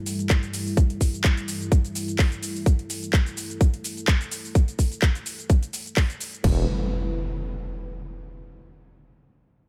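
This bass house excerpt has a gritty, swaggering mood and a dry, close sound. A dark analog pad holds sustained chords from the start, its detuned sawtooth tone thickened by chorus and a sub octave, pumping against the beat as a filter sweep runs over it until 6.4 seconds. An electronic garage drum kit drives the groove with a swung sixteenth feel: a tight, up-front kick and crash cymbal sit forward, while overdriven handclaps, metallic hi-hats and shaker add bite, all placed in a studio reverb. At 6.4 seconds a growling FM bass lands on a low E, thick and saturated with a fast attack, pumping under the sidechain. An up-front electronic impact hits at the same moment and rings on alone until the cut at 8.3 seconds.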